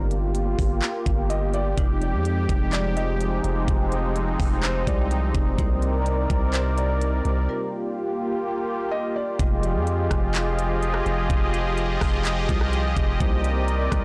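Spacious and melancholic, this atmospheric cloud-rap excerpt at 126 BPM in a half-time 4/4 feel and F dorian sets a bright, nasal, detuned sawtooth pad with chorus and sidechain pumping up front beside a deep, sine-like 808-style bass with tube saturation, while a trap kit drives knocking kicks, crisp hats, handclaps and rim clicks. A soft, felt-muted upright piano with audible action noise and digital delay carries the melody in the background from 1.3 to 9.4 s, and a very quiet, dry, close-miked marimba adds texture from 1.8 s. The whole blown-out, overdriven recording sits in digital ambience, with a break from 7.5 to 9.4 s, as the harmony cycles through Gm7, Fm7 and Cm7 chords.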